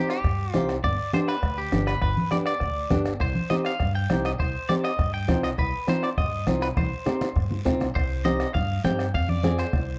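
A dry, close recording with a 1970s studio character and light reverb opens this fiery, passionate cumbia, cut from a longer piece and moving at a brisk 202 BPM in straight 4/4 in C harmonic minor. A bright, twangy clean electric guitar carries the melody between G4 and G5, its picked, compressed tone wrapped in spring reverb and slapback echo. Up front, a fingerpicked flamenco guitar supplies the accompaniment with audible finger squeak, while a woody upright bass played pizzicato anchors the low end. A soft-beatered bombo and a raspy guiro sitting low in the mix come in almost immediately, and damped, thick-skinned congas with a saturated edge join them at 0.5 seconds. The harmony moves from Cm to G and back, a drum fill from 6.8 to 8.0 seconds leads into a new section, and the progression turns to Fm at 9.1 seconds.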